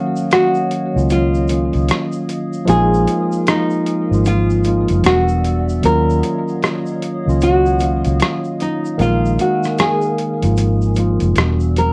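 Melancholic and nostalgic, this lo-fi hip hop excerpt in Eb minor sways at 76 BPM with a swung 16th-note feel: a bright, fingerpicked nylon-string guitar carries the melody with audible finger squeak over a clean tine electric piano, a dark, detuned pad steeped in chorus, phaser and plate reverb, a grainy tube shaker tucked in the background, and a gritty, pitched-down boom bap kit of hi-hat and rim click, while a round, foam-muted electric bass joins up front at 1.0 s and the kick falls silent at 10.6 s, all beneath the drift of worn, warbling old tape.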